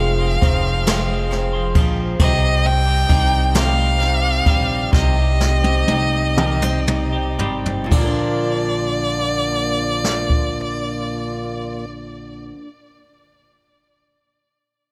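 A bowed violin sits up front with a smooth, nasal, slightly boxy tone, vibrato and a touch of delay, carrying the melody of this tender, romantic six-eight pop ballad in Bb mixolydian. The pulse moves at 38-45 BPM in dotted quarters and slows from 2.2 to 7.9 seconds, while the brushed jazz drum kit plays a fill from 4.9 seconds through the end of that stretch. A double-tracked steel-string acoustic guitar picks the accompaniment, alongside bright, twangy arpeggios from a clean, compressed twelve-string electric guitar with a vibrato effect. A fat tonewheel organ holds sustained chords in the background with light overdrive, chorus vibrato, key click and a slow rotary speaker. Underneath, a woody, thumpy pizzicato upright bass on gut strings plays the bass line as the harmony moves from Fm to Cm and then to Bb, and the distant, roomy drums add dark cymbals and a boomy kick. Studio reverb fills out the sound of this excerpt, which is cut from a longer piece.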